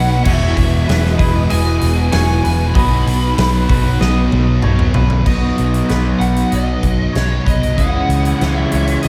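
Soaked in lush hall reverb, this hazy, wistful shoegaze and dream pop excerpt layers an overdriven lead guitar melody with chorus and tape echo over bright, twangy clean arpeggios, a vintage sawtooth string machine of violas that drops out at 5.2 seconds, a double-tracked distorted riff guitar, a hollow-body semi-hollow guitar with reverse reverb and a thick fuzz guitar, all anchored by a dark, round, foam-muted bass up front and a huge arena drum kit with a fat snare and punchy kick that enters at 0.3 seconds and rolls through a fill into the second section at 5.3 seconds.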